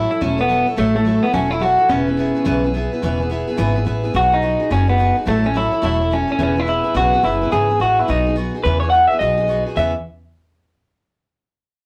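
Rockabilly with a retro, rollicking mood, this short cut from a longer piece swings at 214 BPM in 4/4, sitting in E major. An electric guitar through a small old amp carries the melody up front, its picked tone slightly broken-up, compressed and lo-fi. Beneath it, a jumbo steel-string acoustic guitar picks out full-bodied accompaniment with fresh strings and the occasional finger squeak, while a pizzicato upright bass adds a woody, thumpy pulse that also sits up front. The harmony leans on sixth chords, moving among A6, E6 and B6, with the changes quickening from 8.6 s before landing on E5 at 9.8 s. All three instruments play throughout, captured as a rough rehearsal-room recording with a moderate small-room reverb.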